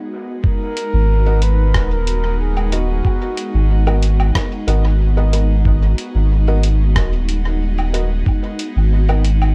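An airy, breathy pad with chorus and 12-bit sampler grit opens this spacious, deep ambient dub fragment in G# minor at 92 BPM, joined at 0.4 seconds by a dark, veiled bucket-muted trumpet melody carrying dub echo until 4.0 seconds and a muffled, thumpy, pitched-down electronic kick up front, then by a filtered lo-fi sampler kit of hi-hat, rim click and echoing woodblock at 0.8 seconds, a round, soft sub bass at 0.9 seconds, and worn, woody upright piano stabs from 1.3 seconds, all in a dry, echo-heavy mix over a G#m7 chord.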